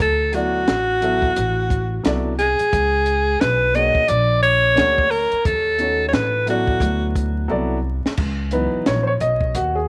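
A breathy alto saxophone carries the melody up front, with subtone, light vibrato and scooped jazz phrasing, in this mellow, cool jazz-hop cut at 88 BPM with a swung 16th-note feel. Beneath it, a woody pizzicato upright bass and a compact cocktail drum kit, with a punchy kick, high-tuned snare and dark cymbals, hold the groove. A dark, intimate grand piano with audible action noise comps through the changes, moving from D13 and C#7sus4 on to D7. The saxophone drops out at 7.1 s, a drum fill follows at 7.5 s, and the piano takes a solo over C#m11 from 8.2 s. Moderate spring reverb and vinyl crackle lend the fragment a vintage sheen.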